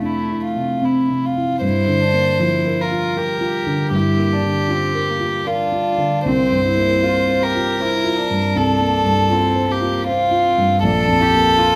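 A rubato 3/4 pulse at 78 BPM carries this fragile, reflective neoclassical piece for piano and strings in G dorian, cut from a longer work, where a single violin with a rich, pure, floating sul tasto tone sings the melody up front, a warm, distant bowed cello traces a second line beneath it, and a felt-muted upright piano, dark, mellow and intimate, gives close accompaniment as the harmony moves from Fmaj7 through Gm7 and C7sus4 to Bb inside a moderate recital hall reverb.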